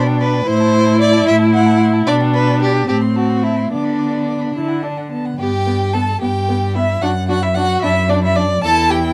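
In a straight 6/8 at 74 BPM counted in dotted quarters, this lively, graceful excerpt from a quick classical-period string quartet movement in G major places a focused, vibrato-rich violin melody with a smooth top above an even, up-front second violin line that joins at 0.2 s, a distant viola accompaniment, and an intimate cello bass played sul tasto with soft attack and airy bow, set in a dark, warm production with light reverb as the music turns from its opening section into a new one at 5.4 s.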